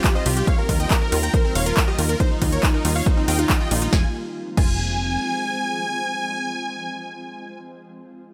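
A straight, punchy drum drive opens this euphoric, emotional uplifting trance excerpt in a drop, with a punchy, up-front electronic kick and a layered dance kit of crisp hats, snare, handclaps, ride and crash, while a funky, evolving analog bass joins at 0.3 seconds under sidechain pumping. Over it, a huge, thick supersaw carries the melody with tape echo and vibrato, shadowed by a very quiet, catchy square-wave unison lead, as a lush, bright unison pluck spins arpeggios in the background and a shimmering, ethereal pad holds dark sustained chords with chorus. The drums and arpeggios stop at 4.7 seconds, the pad drops out at 6.9 seconds, and the harmony moves from Ebadd9 to Fm.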